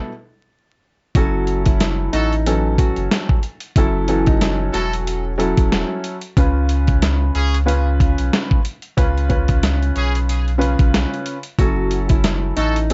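A dusty boom-bap hip-hop groove in 4/4 at 92 BPM, swung on the sixteenths, sets a reflective, dark mood in F# dorian in this excerpt cut from a longer piece. A dark, mellow concert grand piano opens alone over a B7sus4, its audible action noise and cassette-tape softening giving it an intimate, vintage feel, before the gritty sampler-style drum kit arrives at 1.1 seconds with a thumpy kick, medium-tuned snare and hi-hat, sitting up front with 12-bit crunch and the air of a large room. A round sine sub bass joins at 1.2 seconds, deep and sustained beneath the shift to F#m7, while a small fingerpicked nylon-string guitar carries a narrow melody with finger squeak and tape echo, returning near the end. From 2.1 seconds a tight trumpet section adds clear, classical-style stabs with light vibrato, also filtered and touched with tape echo, as the harmony moves to C#7 and back to F#m7. Light reverb and vinyl crackle frame the mix, with the top end rolled off for a hazy, aged sound.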